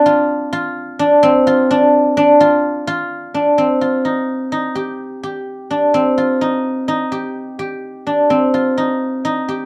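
A dark, moderately reverberant studio sound frames a solo guzheng, silvery and ringing under fingerpicks and placed up front, in this driving, intricate progressive instrumental fragment in 5/4 that moves from a suspended chord to a minor add-nine colour at 3.1 seconds, staying within a narrow middle register.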